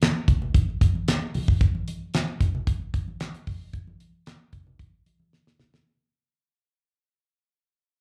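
A straight 4/4 funk groove opens this short fragment, cut from a longer piece, with a slick, late-night mood. A damped 70s drum kit drives it from the start, its tight kick, fat snare, hi-hat and handclaps sounding dry, mid-forward and up front. Congas with a thick skin and medium tuning sit lower in the mix, carrying a slapback echo until 5.7 seconds. The whole passage fades out, and a drum fill arrives at 5.3 seconds just before the end. It sounds like a live gig heard through the venue's PA, with a moderate club reverb around the room.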